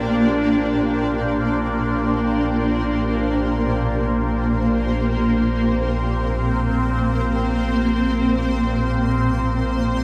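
A shimmering, ethereal ambient pad fills this peaceful free-time fragment in Bb major, holding a Bb6 chord with a slow attack, octave-up shimmer and a granular, bright texture, colored by chorus, phaser and its own reverb and sitting up front. Beneath it, a deep, round sine sub bass holds a low Bb and fades in across the full 10 seconds. The whole passage floats in a huge, wet reverb with an 8.2-second decay, giving it a calm, warm glow.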